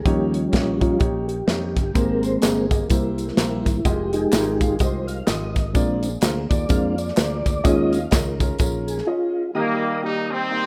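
A swung 126 BPM groove in 4/4 drives this reverent, soulful uptempo gospel excerpt, with a punchy, up-front drum kit, a round fingered electric bass, and tambourine and handclaps joining at 2.0 seconds. A soft, flute-like tonewheel organ carries the solo through fast rotary speaker and chorus vibrato, over woody, slightly detuned upright piano accompaniment and a very quiet, dark French horn section, as the harmony moves from Eb7 through Abmaj9, Fm9 and Bb7. At 9.5 seconds a distant, roomy horn section takes the melody with light vibrato, all in a rough home demo mix with light reverb.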